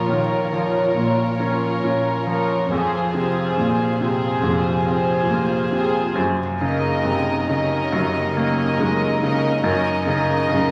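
Moving and longing, this rubato cinematic cue in Bb minor at 69 BPM drifts through Bbm, Fm, Gb6 and Ebm7/Gb in a short cut from a longer piece. A floating, sul tasto violin section carries the melody over a second violin line, while a brilliant, polished baby grand piano sits up front with accompaniment and a dark, woody viola section with vibrato fills in behind. A ringing, fingerpicked concert harp plays arpeggios and a soft-attack cello section plays the bass from 0.1 s, all set in a wet scoring-stage reverb with a layer of vinyl crackle.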